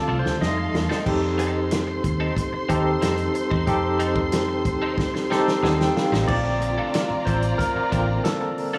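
Lush 1970s-style soul in a straight 4/4, featuring a barky tine electric piano with medium tremolo through a combo amp, sitting up front and taking solo turns at the opening and again from 6.3 seconds as the harmony moves from F7 to Bbmaj7. A round, foam-muted fingered bass and a vintage drum kit with dark cymbals and a punchy kick hold the groove, the drums adding fills at the start and around 5.0 seconds, while a bright, compressed semi-hollow guitar plays a clean picked riff through analog chorus. Behind them, a studio string section adds an expressive bowed second line with vibrato and portamento, in a room with light reverb and studio ambience.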